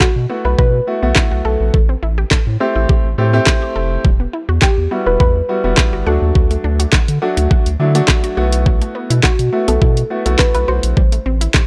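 A knocking, tape-flavored R&B drum kit with a woody snare, handclaps and hi-hat sits up front in this energetic, bittersweet dance-pop excerpt at 104 BPM in a straight 4/4, with a deep, round analog bass pumping beneath it over chords moving from B7sus4 through Am7, Emadd9 and D. A clear concert grand piano with long sustain pumps in the accompaniment until 11.0 seconds, while a soft, dark, wave-folded pluck carries the melody with chorus and tape echo, and a lush, bright, detuned unison pluck spins arpeggios in the background, also pumping and echoing. The mix has a dry, gritty hardware character set in digital ambience.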